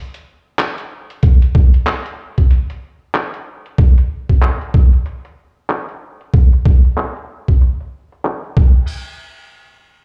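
Swaggering and playful, this glitch hop excerpt struts at 94 BPM in 4/4 with a 60% swing on the 16ths: a compressed, pitched-down, tape-warm boom bap sampler-style drum kit of crash cymbal, handclaps and hi-hat, with low-pass-filtered snare, hats and cymbals, enters at 0.1 s under a filter sweep that runs on the drums until 8.9 s; a gritty, thumpy, up-front electronic kick drum joins at 1.2 s; and the whole sounds as if played on a big sound system in a bare stone room.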